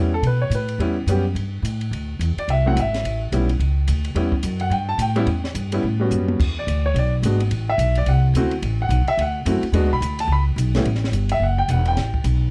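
This short cut from a longer jazz piano trio performance opens with a baby grand piano and a pizzicato upright bass sounding together, joined almost at once by a compact cocktail drum kit. The piano carries a solo throughout, its natural, up-front tone and short sustain moving over swung changes such as A9, D7sus2, E7 and D9 before landing on A7sus2. The bass sits just as close, woody and steel-strung, while the drums stay lower in a small room, dark and smooth, with a high-tuned snare, a punchy kick and a rolled-off top across hi-hat, ride, crash and toms. A drum fill arrives at 6.1 seconds, partway through the 4/4 passage. The dry, dusky production gives the trio a sophisticated, warm mood.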